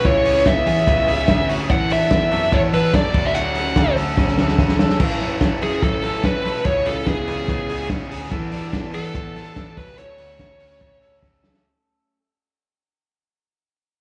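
A straight, steady 4/4 groove from an up-front, muffled vintage drum kit with a tight kick and medium-tuned snare drives this bittersweet, wistful stretch of jangly indie pop, cut from a longer piece, with a drum fill at 4.2 seconds before the music begins fading out at 5.0 seconds. A distorted, bluesy lead guitar carries the melody up front with slapback echo and delay, while a slightly broken-up, lo-fi guitar through a small old amp picks arpeggios, a bright, overdriven stack guitar supplies picked accompaniment in the background, and an intimate grand piano with audible action noise supplies deep bass lines under chords moving from C#m7 through E7sus4 and Dmaj7 to F#m7. The whole thing sounds like a live club gig heard through the venue's PA, with moderate room reverb and a layer of vinyl crackle.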